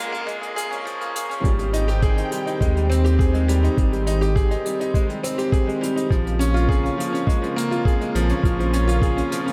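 This luminous, hopeful piano and strings electronica in Ab major at 103 BPM opens with a very quiet, earthy bowed cello on Ab3 that stops at 0.9 seconds, alongside a thick, detuned sawtooth unison pad sustaining chords through a filter-sweep build-up and a bright, woody upright piano riff trailing diffuse ambient delay. Brushed acoustic hi-hat and a compressed, muffled, pitched-down electronic kick join within the first second, and at 1.4 seconds the drop lands with a deep, round sine sub bass pumping under sidechain as the harmony moves from Bbm7 to Abmaj7, returning to Bbm7 at 6.1 seconds. The whole dreamy mix is soaked in plate reverb, with the piano, kick and bass sitting up front.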